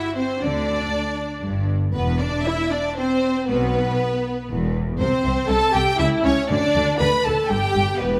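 Bathed in the wet reverb of a scoring stage, this lively, cheerful excerpt of a quick classical-period movement for string orchestra in 3/4 with a rubato feel sets a lush, up-front first violin section with a soft attack on the melody, over a dark, woody second violin line and smooth, even violas, while focused cellos and distant, expressive double basses join on the bass at 0.4 s.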